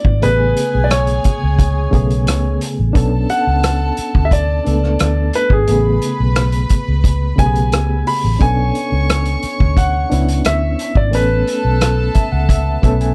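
A clear, intimate baby grand piano carries the melody from the start, its action noise audible, over a barky, lightly overdriven reed electric piano with fast tremolo and a vintage drum kit of punchy kick, hi-hat and rim click in a small, pumping room. A dark, round, foam-muted fingered bass enters a moment later, and a distant, floating chamber string section adds a soft-attack second line from 0.2 seconds as the harmony moves between Amaj9 and Bm9 in this smooth, cinematic slice of lush 1970s-style soul. The reed electric piano plays a fill from 11.8 seconds, and the dry mix keeps the bass and drums up front.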